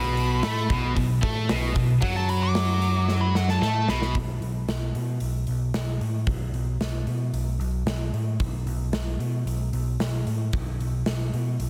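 Aggressive and menacing, this hard rock excerpt in B minor drives at 113 BPM in a straight 4/4, opening with a smooth, warm overdriven lead guitar solo over two bright picked rhythm guitars, one cranked-stack overdrive and one high-gain distortion, both riffing low on a B5 chord. A drum fill from 3.1 to 4.1 seconds closes that opening, after which the three guitars stop and the growly, punchy overdriven bass and the big-room acoustic kit, with its punchy kick and medium-tuned snare, carry on alone to 11.7 seconds. The bass and kit sit up front in a dense mix, set in studio reverb with a heavily limited modern master.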